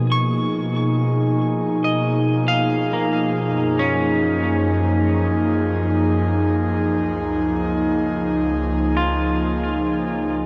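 Serene and luminous, this ambient passage in free time, cut from a longer piece, sets an airy, breathy pad with a chorused, up-front sustain under a bright, clean semi-hollow electric guitar picking delayed arpeggios that fade in as a filter sweep moves through the pad, all washed in a huge 7.2-second reverb and the warbly pitch drift of worn cassette tape while the chords shift from B6 to F#maj7 at 3.5 seconds and C# at 6.9 seconds.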